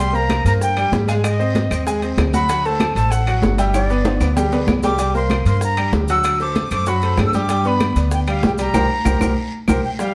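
A straight 4/4 salsa groove at 192 BPM drives this fiery, danceable excerpt, with ringing congas, metal-shelled timbales, woody claves, a raspy guiro and grainy maracas in the background, very quiet, tight bongos, and a thumpy pizzicato upright bass up front. A breathy jazz flute with a chiffy, crisp attack carries the melody over a brilliant grand piano whose action noise and long sustain sound close and present, moving through chords such as C5, Ab, D7 and G. Drum fills arrive at 3.7 and 8.7 seconds, the second joined by a band accent, and the band sits in a wet studio reverb heard from further back in the room.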